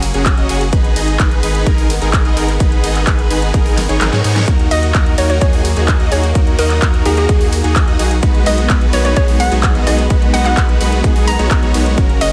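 A straight 128 BPM pulse drives this excerpt of festival progressive house, with a punchy, overdriven electronic kick sitting up front over a big-room drum kit of huge snare, metallic hats, ride cymbal and handclaps, itself roughened by overdrive. Underneath, a deep, saturated sine sub bass and a backdrop of smoothly bowed studio strings both pump with sidechain, giving the groove a breathing, powerful lift. Huge, lush supersaw chords carry the riff from the start, their bright detuned sawtooth stacks tinted by cassette tape and trailed by dub echo as the harmony moves from Gb through Abm, Ebm and B6. Around 4.0 seconds the kick drops out beneath a drum fill while a very quiet reverse cymbal sounds, and at 4.7 seconds a hollow, bouncy square-wave pluck enters with a mellow, chorused melody carrying its own tape colour and echo. The whole excerpt sits in a digital ambience that heightens its euphoric, festival-ready sweep.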